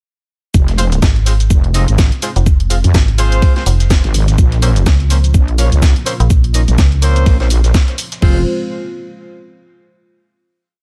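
An overdriven, knocking four-on-the-floor kick and a heavy, saturated wobble bass with shifting wobble speed open this aggressive, gritty bass house piece together with a cracking garage kit with bright hats and crash, a tape-dusty looped breakbeat sitting in the background, and a deep, moody analog pad pumping behind it all. Dark jazz-style horn stabs with light vibrato and octave doubling arrive at 0.8 s, and at 1.0 s a metallic, chopped FM bass adds decaying digital bite until 7.2 s. The drop rides a digital ambience before settling onto a final chord at 8.2 s.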